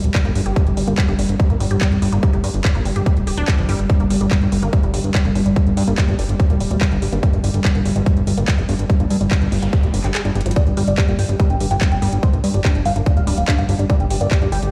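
A tight, up-front electronic kick drives a straight 144 BPM pulse through this hypnotic, alien psychedelic trance passage in G minor, joined by a fat, saturated sawtooth bass, metallic hi-hats and handclaps, a punchy, warbling unison pluck riff with dub echo and a filter sweep, and a bright, pulsing gated chord texture pumping in the background. A very quiet noise sweep sounds as the kick drops out at 10.1 seconds, a drum fill lands at 10.4 seconds, and a gritty, screaming, guitar-like overdriven lead with phaser and vibrato takes the melody from 10.6 seconds, all set in a large studio reverb.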